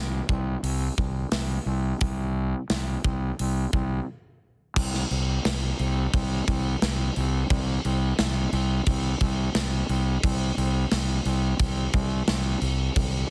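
A growly, overdriven fuzz bass opens this heavy, driving hard rock excerpt at 88 BPM in straight 4/4, punchy and up front from the first second, joined at 0.3 s by a polished, airy metal drum kit with bright crash and hi-hat cymbals, a medium-tuned snare and a tight kick, with a brief break at 4.1 s before a new section takes over at 4.8 s, all in a dry, heavily compressed radio sound.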